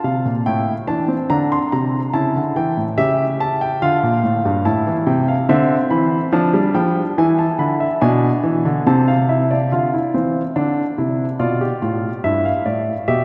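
Set in a wet church reverb with a 3.1-second decay, this short passage from a longer piece is a driving yet contemplative baroque-style three-part fugue in D minor at 71 BPM in a straight 3/4, played by a solo grand piano tuned to A4 = 438 Hz, whose intimate, up-front, natural tone carries audible action noise across a range from G2 to C6 as the harmony moves from Dm through A7, E7 and Bdim to close on Em/G at 12.2 seconds.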